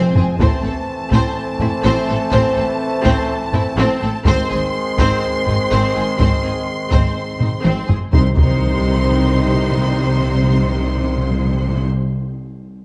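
A close, dry taiko ensemble struck with heavy sticks drives this straight 4/4 at 124 BPM, opening with a fill and adding another just before the music shifts at 8.1 s. This cinematic, epic orchestral cue in C minor feels relentless, its harmony moving from Am to Ab and settling on Cm. High violins carry a lush, expressive melody with vibrato and soft attacks, while a second violin line and a rich viola section fill in below. Mellow French horns and bright trombones hold tight sustained chords, and a smooth double bass section and focused cellos anchor the low end. Round, soft-mallet timpani enter at 8.1 s on a single low pitch, and the taiko drops out at 9.1 s, all set in a moderate recital hall reverb with a dark production, cut from a longer piece.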